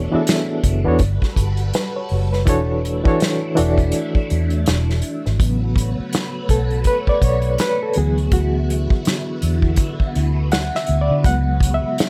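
A dry, close-sounding cut from a relaxed neo-soul R&B groove in A major at 82 BPM with a swung sixteenth feel, where a bright, reedy electric piano with fast tremolo comps over chords like E13sus4 and Gmaj9 before taking a solo from 5.4 seconds, a swirling, phased string machine holds slow-blooming sustained chords behind it, a dark, foam-muted fingered bass sits round and up front, and an acoustic kit played with bundle sticks, entering at 0.3 seconds, adds a punchy kick, medium-tuned snare and hi-hat.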